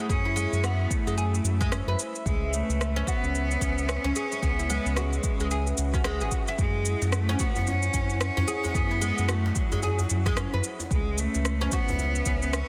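A swung 16th-note groove at 111 BPM in 4/4, built on a deep electronic kick and a produced shaker with a soft-clipped rim click, drives this mystical, warm organic downtempo piece in C# minor, where a biting, distant cello with vibrato carries the melody through tape echo, a woody, plectrum-plucked fretless oud arpeggiates with its own tape echo, a smooth, detuned analog pad holds sustained chords through chorus, gritty 12-bit sampler texture and sidechain pumping, and a round, dark analog bass sits up front with the same pumping, while a faint electronic swell enters in the background at 5.7 seconds and a very quiet, distant djembe with metal rattles joins at 7.0 seconds, all under light reverb and a dense, heavily limited modern master.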